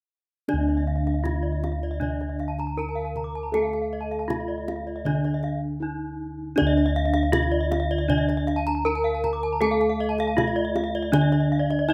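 Round, beating bronze bossed gongs carry the bass up front beneath a bright, horn-mallet metallophone melody whose paired tuning gives off shimmering beats, alongside a dark, smooth wooden-mallet metallophone accompaniment in the background, two ringing metallophone arpeggio lines (one close and dry, the other airy), and tight kendang, all in a brilliant Balinese gamelan passage cut from a longer piece, with a brief break between 5.4 and 6.6 seconds in its rough home-demo small-room sound.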